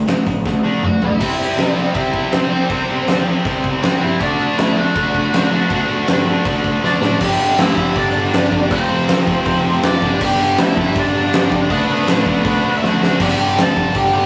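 A rough rehearsal-room sound with moderate studio reverb frames this rowdy, energetic punk rock excerpt in straight 4/4, led by a big, dark acoustic drum kit up front, with a fat snare and punchy kick cutting through crash, hi-hat and toms and several drum fills. Two bright, tight distorted guitars pick a riff from the start, one very quiet and the other in the background, joined by a growly fuzz bass with overdrive, and at 1.2 s a double-tracked overdriven electric guitar adds another riff. At 0.8 s a nasal, overdriven lead guitar with a parked wah takes the melody, its dark tone standing out as the harmony moves from D and C to G5 and F5 power chords.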